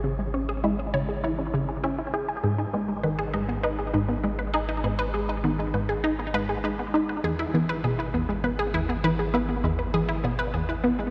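A bright, warbling unison pluck spins arpeggios through a filter sweep from the opening second, joined at once by a juicy, squelchy blip-pluck riff with chorus, phaser and delay and by a round sine sub bass holding a deep G#1. This mysterious, cosmic slice of sequencer-driven space music moves at 100 BPM in a straight 4/4 in G# minor, with the harmony shifting from C#m/G# to G#m at 2.4 seconds and to E/G# at 7.2 seconds. Both plucks sit up front, with shimmer reverb on each, inside a vast cathedral reverb that lets every note echo into the distance.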